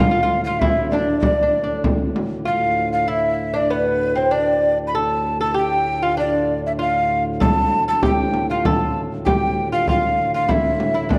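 A breathy, hollow tenor recorder carries the melody up front with a chiffy attack and vibrato over a delicate, fingerpicked gut-string lute line and a reedy, breathing harmonium drone, while a deep frame drum enters at 0.6 seconds, drops away at 2.4 and returns at 7.4, giving this mysterious, ancient-sounding medieval dance in straight 2/4 a dark, warm glow inside a wet recital-hall reverb.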